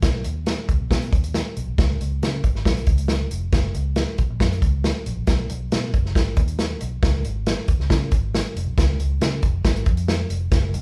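A straight 4/4 pulse at 137 BPM drives this uptempo 1960s-style soul cut, which is taken from a longer piece and tuned to A4 = 439 Hz. A warm acoustic drum kit plays throughout the 10.8 seconds, its tight kick, medium-tuned snare and hi-hat sitting up front with a rolled-off top and a roomy character. A vintage fingered electric bass runs alongside from start to finish, amped and foam-muted, with a dark, round, punchy tone that ranges from E#1 up to C#3. The band plays live in one room, and a moderate large-studio reverb of 0.8 seconds binds the two parts together. The mood is driving and passionate, and the whole passage stays in a single section.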